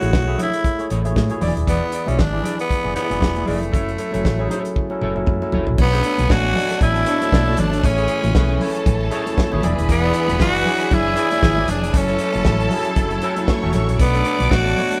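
A lightly swung 16th-note groove at 117 BPM in 4/4 drives this sultry, danceable disco cut in B dorian, taken from a longer piece. A damped 70s drum kit sits at its core, with a fat snare, tight kick, crash, hi-hat and toms under a rolled-off top, and a fill at 4.8 seconds leads into the second section. A round, hollow-body fingered bass runs low and dark beneath it, while high-tuned congas with a thin skin ring in the background as though from a large room. Up front, a raspy, growling tenor saxophone carries the melody with light vibrato, over a barky, lightly overdriven tine electric piano and a clean, fingered electric guitar tucked behind. At 5.8 seconds a lush bowed string section arrives, one part holding sustained chords from a distance and another adding a smooth-topped second line above. The chords cycle through Amaj7, E7, F#m7 and Bm9, and the whole band plays live together in one room with moderate studio reverb.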